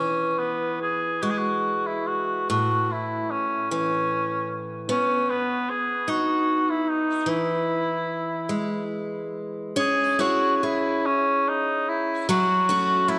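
Wistful and tender, this short passage from a longer piece is a Celtic slow air in 6/8 and E major, moving at an unhurried 49 beats per minute with an uneven, rubato feel. A cor anglais carries the melody throughout in a classical solo style, its warm tone shaped by light vibrato and a soft attack, sitting up front yet with a distant, roomy quality. Beneath it, a bright, picked steel-string acoustic guitar provides concert-style accompaniment across a broader range, also placed up front. The harmony moves from E through A and B back to E, then turns toward C#m at 9.8 seconds and F#m at 12.3 seconds as a second section begins. A wet church reverb with a long 3.3-second decay surrounds the performance and gives it a spacious, resonant setting.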